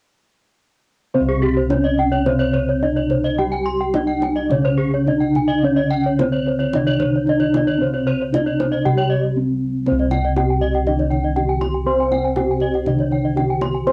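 A home cassette recording in a small, damp booth gives this short cut from a longer Balinese gamelan piece a close, slightly vintage sound as bronze metallophones in paired tuning shimmer against one another at 107-120 BPM in C pelog. A mellow, padded-mallet metallophone carries the ceremonial melody over a lower metallophone accompaniment, while two ringing metallophones spin arpeggios above. Round, beating bossed gongs sit up front on the bass line and a tight, band-limited kendang stays in the background, with a brief break at 9.1 seconds before a new section begins at 9.9 seconds.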